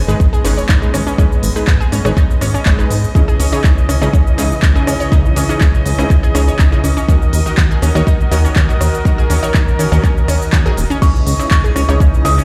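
A deep, up-front electronic kick drives this 122 BPM progressive house excerpt in C# dorian, joined by a punchy, funky analog bass and a deep house kit of smooth hats, handclaps, rim clicks, cabasa and crash, pumping to the sidechain. Intimate chamber strings bowed sul tasto hold sustained chords through G#m, C#madd9 and D#m with a vintage 12-bit sampler grit, while lush detuned unison stabs with delay sit in the background and a crystalline wavetable pluck spins bright arpeggios through chorus and delay. A warbling FM bell with tremolo enters at 11.0 s and a very quiet drifting harmonics texture appears at 11.7 s, and a large studio reverb gives the driving, emotional mood a big-room sound.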